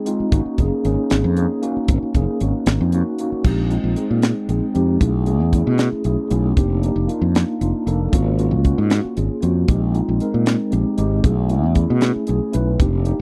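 An up-front fretless electric bass drives this slick electric jazz fusion fragment in 6/8, its direct, amped, bright tone ranging from F1 to B2. Beside it, a crisp acoustic fusion drum kit sounds airy and polished in a studio room, with dark cymbals, a high-tuned snare and a punchy kick across crash, hi-hat, kick and snare. A mellow tine electric piano, clean and heard through its built-in speakers with a lush chorus, carries the accompaniment in suspended harmony, opening on Ab9sus4 before moving through thirteenth-sus chords such as Bb13sus4, B13sus4 and F13sus4. After a short opening passage, a second section begins at 3.5 seconds and runs until the cut at 13.2 seconds. The dry, close, 1970s-style studio sound gives the bright mood an intimate edge.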